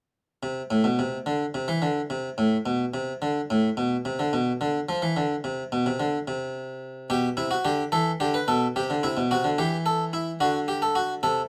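A solo harpsichord, Italian in style with a single set of strings, sounds plucked, round and full, placed up front in a dry, close and detailed recording touched only by light reverb. This joyful, elegant baroque-style fugue in three parts moves at 72 dotted-quarter beats per minute in a straight 12/8, ranging from A2 to B4. Cut from a longer piece, the passage opens before any chord is established, then settles onto a G/B chord at 7.1 seconds and a D7 at 10.4 seconds, ending at 11.4 seconds.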